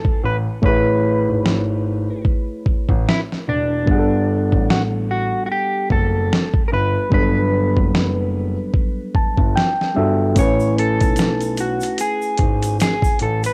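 A dry cassette-tape home recording of dreamy, cosy lo-fi hip hop at 74 BPM in A major, with an up-front, gritty, overdriven sampler-style drum kit thumping under a dark, clean fingered electric guitar melody and a barky, reedy electric piano that adds a fill from 8.7 to 10.4 seconds, while a mellow grand piano with audible action noise plays the low bass over Amaj9 and Gmaj9 chords and a distant, grainy egg shaker joins at 10.4 seconds in this short excerpt.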